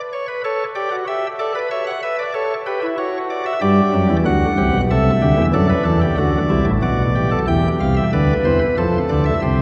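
Moving in a straight three-beat metre, this short fragment of a baroque-style, three-part fugue carries an elegant, stately poise. A single chamber organ plays alone from 0.1 s to 9.6 s, voiced on a nasal cornet solo stop whose chiff gives each note a crisp onset and sits up front in the blend. Its lines span from deep bass to a high upper register, weaving the fugue's three voices through a graceful harmonic walk that passes through D, A7, G and D7 before settling on G/B. Around 7.5 s the music moves into a new passage that opens on C and turns toward Dm/F before the fragment breaks off. A very reverberant cathedral acoustic surrounds the instrument, placing the listener further back in the room, with long tails that lend the modest chamber voicing a grand, spacious halo.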